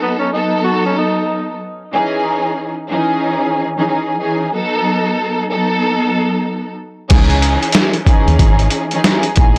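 A swung 16th-note feel at 93 BPM in 4/4 carries this moody, reflective boom-bap hip-hop fragment in C# minor, cut from a longer piece. A breathy tenor saxophone opens in the first 1.5 seconds with a whispered, intimate jazz phrase full of subtone, vibrato and scooped notes, softened by filtering and analog delay. Underneath, a lush bowed string section sits up front throughout, its smooth, expressive ensemble tone passed through cassette tape as the harmony moves between B7 and C#madd9. At 7.1 s a pitched-down, sampler-style drum kit arrives with a thumpy kick, medium-tuned snare, hi-hat and crash cymbal, sounding compressed and muffled. It is joined at the same moment by a deep, round dub bass, fingered and foam-muted, given extra weight by tube saturation. The whole recording is dry and gritty, with little reverb and a hardware character.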